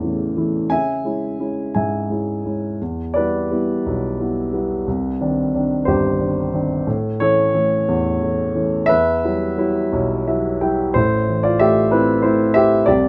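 Reflective and dark, this short excerpt from a longer classical piece features a lyrical solo grand piano moving in a slow, rubato 6/8 around 57-63 BPM in E dorian, tuned slightly below standard pitch at A4 = 437 Hz. The piano sounds warm and up front, ranging from a deep G1 to G#5, captured by close, detailed microphones with a light touch of reverb. Harmonies drift from A through C#m and Em to a Cmadd9, returning to A before settling on a shaded Emadd9. A brief piano fill at 9.9 seconds leads into a new passage at 10.9 seconds, where the harmony turns to Am. The unhurried pacing and rich low register give the fragment an intimate, brooding character.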